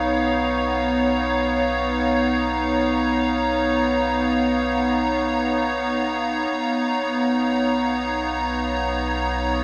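Floating in free time, this ambient passage, cut from a longer piece, feels weightless and serene as it rests on a single Bmaj9#11 chord in B lydian. Up front, a bright, evolving wavetable pad holds sustained chords from B3 to A#5, its detuned, warbling tone morphing and carrying chorus and its own reverb. Beneath it, a round analog bass fades in on a deep, dark B1, with a filter sweep and a touch of tube saturation. In the background, a hand-pumped harmonium adds a reedy, breathing drone between B3 and C#5. All three parts sound together from 0.0 to 9.6 seconds, bathed in a huge ambient reverb with an 8.0-second decay that leaves the sound drifting and suspended.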